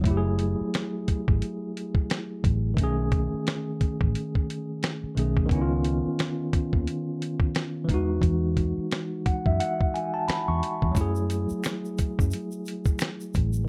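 A gritty, sampler-style drum kit with a thumpy kick and fat snare sits up front in this sultry, late-night neo-soul R&B excerpt with a swung sixteenth feel, alongside a dark, foam-muted fingered electric bass and a clean tine electric piano bathed in plate reverb that moves through rich ninth and thirteenth chords and plays a fill from 8.9 s, before a close, dry tube shaker and finger snaps enter at 11.0 s.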